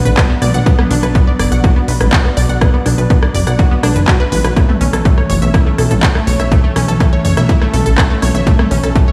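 Dramatic and melancholic, this melodic techno excerpt runs at 123 BPM in a straight 4/4, sitting in B minor and moving from Bm to A at 4.6 seconds. A punchy, tape-tinged electronic kick sits up front, joined by a techno kit of handclaps, smooth hi-hats, rim clicks and toms, with the hats and toms pumping against the sidechain. Underneath, a plucky analog bass built from sawtooth, square and triangle waves with wave-folding has a funky, fast-attack bite and a decaying tail, also pumping and placed up front. A lush, detuned unison pluck plays bright arpeggios through a delay, while an evolving wavetable pad holds sustained chords in the background, morphing through a phaser and its own reverb. The whole mix carries a light digital ambience and the stony reverb of a big sound system playing in a bare room.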